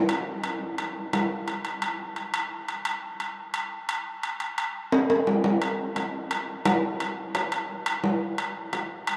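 Drenched in a wet, cathedral-like reverb with a tail of about 6.2 seconds, this recording places its sole instrument in a vast, echoing space. It is a short Latin fragment at 174 BPM in a straight 4/4, carrying a sultry, danceable mood. Acoustic timbales with a ringing metal shell play from 0.1 seconds to the end, sitting up front yet carrying a distant, large-room character. A drum fill arrives at 4.9 seconds and leads into a new section at 5.6 seconds. The piece is lifted from a longer work.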